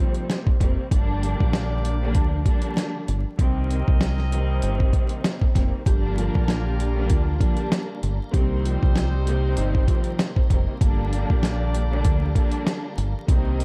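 Gritty and moody, this boom-bap hip-hop excerpt in G minor rides a swung 97 BPM groove built on a dusty, compressed sampler-style kit with a thumpy kick and fat snare, a round, punchy dub bass entering at 0.6 seconds, lush bowed strings with cassette-tape grit, clear vintage horn stabs trailing tape echo, a mellow clean electric guitar melody tucked in the background that flickers briefly at the very start and returns from 5.9 to 10.2 seconds, and a very quiet piping tonewheel organ holding chords from 5.9 seconds, all over Cm7 and Gm7 with vinyl crackle and a dry, dark production.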